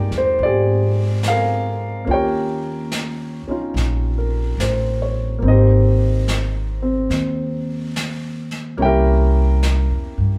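Recorded by a band playing live in one large studio room with a moderate reverb, this intimate, wistful jazz ballad fragment has a gentle swing. A warm grand piano with short sustain plays accompaniment up front, while a woody pizzicato upright bass sits close beside it and an airy, polished brush drum kit works softly on snare and hi-hat from 0.1 seconds. The harmony moves through Fm11, Eb9, Abmaj9 and C7b9 before the piece is cut off at 10.4 seconds.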